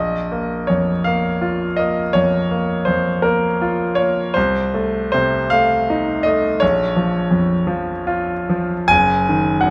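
A close, detailed recording places a bright, brilliant grand piano up front in a moderate stage reverb for this short, mournful excerpt of a romantic classical nocturne in 12/8 with free rubato, the solo instrument spanning deep bass to upper treble as its melancholic harmonies move through a diminished chord at 4.4 seconds before settling in the minor home chord at 6.6 seconds.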